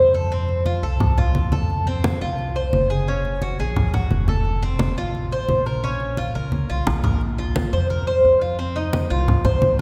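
Set in a reverberant church-like hall, this nostalgic, danceable fragment of Cuban son and guajira at 174 BPM in Bb harmonic minor puts an up-front, metallic Cuban tres with double strings picking arpeggios over a woody, thumpy pizzicato upright bass on gut strings and bright, low-tuned congas played with soft hands and captured close and dry, with a drum fill at 6.5 s leading into a new section at 7.2 s that moves from Bbsus2 to F5.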